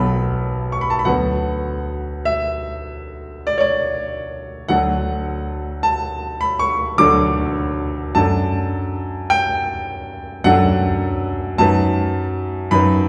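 A wet concert hall reverb with a 1.9-second tail surrounds this recording, which is heard from further back in the room, yet the grand piano still sits up front. It is a melancholic, mournful romantic nocturne for solo piano in 9/8, moving slowly at 51 BPM in dotted quarters with uneven beats and free rubato. The piano's tone is clear, smooth and vintage, with a short sustain, and it ranges from B1 to D6, tuned to A4 = 441 Hz. Across this 13.1-second fragment of a longer piece, the harmony moves from B minor and B minor over D to D major at 4.7 seconds, then D over F sharp, before reaching B7 over F sharp at 11.6 seconds.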